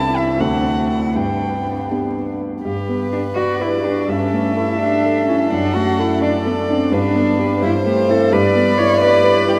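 Cheerful and spirited, this quick classical-period movement for piano quartet moves in a lilting 6/8 at roughly 79-87 dotted-quarter beats per minute, its rubato feel lending a flexible, breathing pulse in G major. A dark-toned violin carries the melody with vibrato and a soft, sul tasto attack, while a dusky cello and a second, warmer violin weave supporting lines beneath it, the latter touched with light vibrato and an airy bow. The grand piano provides a natural, up-front accompaniment spanning from deep bass to the middle register, sounding loudest among the parts. All four players sound throughout the 9.6-second fragment, and the harmony passes from D7 to G and later through A7/G, D/F# and Em7/G. The strings feel close and intimate, yet the whole ensemble is bathed in a vast cathedral reverb whose long, echoing tail lends the cheerful music a spacious, hallowed glow.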